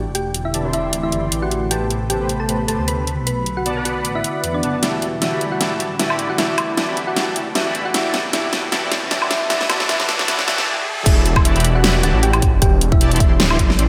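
A dreamy, lush future bass excerpt soaked in a hall reverb, with the airy, breathy pad sitting mellow in the background and a detuned saw bass, thick and saturated, pumping beneath a tine-like, warbling thumb-piano-style pluck carried on analog delay, all moving at 154 BPM in a half-time feel through A dorian chords such as Am9, Bm7 and Em11. A soft, smooth supersaw riff moves through a filter sweep during the long build-up, while an up-front dubstep kit with a huge snare, hi-hat, crash and woodblock plays a fill, and a very quiet riser carries on through a brief break toward the drop. The pad stops at 11.0 seconds, and at 11.1 seconds a punchy electronic kick arrives with the drop.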